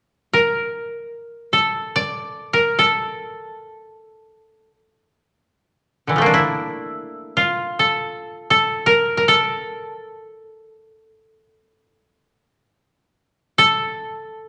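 In free time, this calm, austere fragment of a longer piece of Japanese traditional chamber music features a solo koto played with fingerpicks, sounding dry, woody and up front as it ranges from D3 to D5 in A miyako bushi from 0.3 to 14.5 seconds, all set in a moderate recital-hall reverb.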